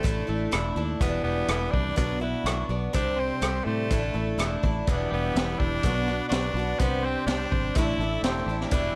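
A raspy, gritty tenor saxophone carries the melody up front with forceful vibrato in this wistful, dusty folk rock and heartland rock excerpt, moving at 124 BPM in a straight 4/4. Beneath it, a picked twelve-string acoustic guitar rings bright and boxy with a parlour-sized shimmer and audible finger squeak, while a clean, compressed twelve-string electric guitar plays a riff in the background. A dark, round fingered electric bass sits up front with a foam-muted thump, and a vintage drum kit with a high-tuned snare, tight kick, rim clicks and hi-hat keeps time from a mid-forward studio room with a rolled-off top. At 4.9 seconds a very quiet, reedy musette accordion slips in with sustained chords. The harmony circles through Asus4, Em7, Bm and Csus2 under light reverb, and the passage is cut from a longer piece.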